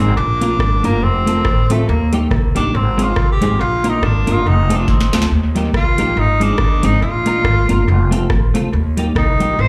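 Heard through a live club PA with a moderate room sound, this bouncy, joyful ska clip in Eb major swings at 140 BPM, cycling through Bb, F, Eb and Ab. A roomy tenor saxophone with light vibrato takes the solo up front, colored by plate reverb, slapback echo and analog delay. A clean, compressed, fingered electric guitar with ensemble chorus supports it, alongside a woody pizzicato upright bass, and a booming analog drum machine with a deep kick, crisp snare and metallic hats enters at 0.4 s and plays a fill at 4.9 s.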